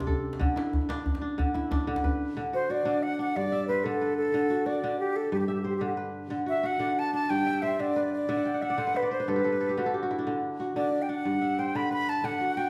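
A ringing, fingerpicked kora opens this joyful West African string-and-xylophone excerpt in 12/8, its arpeggios spanning G2 to G5 alongside an up-front, medium-tuned djembe struck with hard hands in a small-room sound. The djembe drops out at 2.2 seconds, and at 2.5 seconds a breathy concert flute takes up the melody, close-miked and reedy, with a crisp attack and a touch of vibrato, sitting slightly louder than the kora. The tempo moves at 122 BPM in the dotted-quarter pulse with a straight feel, settled in D mixolydian and tuned to A4 = 439 Hz. Underneath, the harmony simply alternates between D and G, giving the passage an easy, sunny sway, and the crisp kora adds a fill starting at 8.3 seconds. A wet recital-hall reverb with a 1.6-second decay surrounds the sound, lending a warm, spacious glow.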